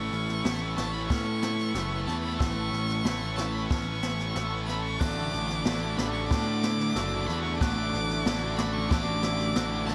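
Hopeful and euphoric, this post-rock build-up moves at 92 BPM in a straight 4/4, shifting from Aadd9 to Dadd9 at 5.0 seconds in A major. A rich, close violin carries the melody with expressive vibrato, portamento and a soft bowed attack, touched by digital delay, while a dark, woody symphonic string section sits very quietly and distant beneath it in lush sustained chords. Glockenspiel struck with rubber mallets rings in the background with mellow, bell-like arpeggios through digital delay, alongside very quiet arpeggios from a twangy, scooped clean electric guitar. A tight, bright distorted guitar drives a riff over an up-front fuzz bass with an overdriven tone, and a second bright overdriven guitar riff joins in the background at 5.0 seconds. A jazz brush drum kit recorded naturally in a small room, with a boomy kick, medium-tuned snare and dark cymbals, enters at 0.1 seconds, and the whole excerpt sits in a studio reverb.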